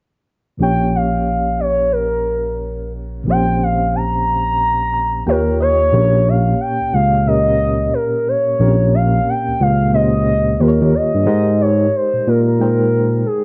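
A dark, snug small-room sound frames this introspective, late-night R&B excerpt, which moves at 90 BPM in 4/4 with a 16th-note swing and sits in Bb dorian. Up front, a barky tine electric piano carries the bass line from Bb1 to Bb2, lightly overdriven through a combo amp. Beside it, a bright, reedy electric piano plays clean accompaniment chords through its built-in speakers, colored by a fast tremolo, and adds a fill from 4.6 seconds. Over the top, a mellow sine lead sings the melody with smooth portamento glides, vibrato and a chorus sheen, holding its sustained notes prominently in the mix. The harmony circles Bbm69 and Eb9, with the second section from 5.9 seconds reaching Abmaj9 near its close.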